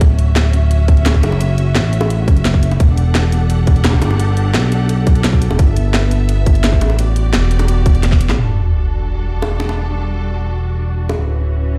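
Played back through a big sound system in a bare stone room, this dreamy, soulful liquid drum and bass passage moves at 172 BPM in E dorian. Lush, distant bowed strings hold sustained chords from Dmaj9 through Em11, G69 and A13sus4 over a smooth, tube-saturated synth bass with vibrato that sits up front. A tight, overdriven electronic kick and a layered kit with a cracking snare and bright, low-pass filtered hats drive the groove alongside high-tuned acoustic bongos that enter at 1.1 s, until a drum fill closes the beat and a sub drop lands at 8.4 s as the harmony settles on Em11.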